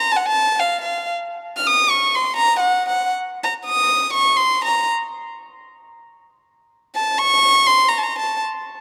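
A lone violin carries this brief Balkan folk fragment, playing in free time with a soft attack and an airy, sul tasto bow that gives its tone a pure, floating quality. The mood is bittersweet yet fiery, and the single player sits close and up front, heard through detailed microphones. An analog delay trails the violin, and a light reverb adds a touch of space around it. The line stays high, ranging from F5 to F6, and the tuning rests slightly below standard pitch at A4 = 437 Hz. The violin sounds from the start until 8.4 seconds, in a moment cut from a longer piece.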